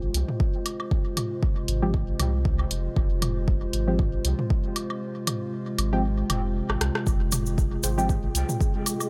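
Hypnotic and hazy, this dub techno excerpt in F minor moves at 117 BPM with a lightly swung 4/4 feel. A warbling, lo-fi tape-like pad holds dark sustained chords over a round sine sub bass, while a deep, up-front kick and a deep house kit of hi-hat and rim click sit alongside overdriven electronic toms and woodblock that trail dub echo. A soft, chorused chord stab under a filter sweep pumps with the sidechain. The kick drops out between 5.0 and 7.1 seconds, capped by a short drum fill. Near the end a grainy, bright tube shaker joins, followed in the background by a breathy wind-like noise texture and a brief muted, detuned dub stab with phaser, all within a light digital ambience.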